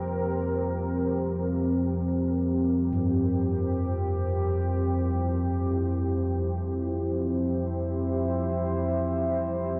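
A deep, rumbling, warbling drone and a moody, detuned pad with chorus sit up front from the opening of this cavernous, desolate dark ambient fragment in free time, moving from F5 to C at 2.6 seconds while very quiet, metallic bronze gamelan-type bossed gongs trace arpeggios and a pure quartz singing bowl rings barely audibly, the whole mix set in a huge, wet reverb with a cassette-tape character before fading out from 8.4 seconds.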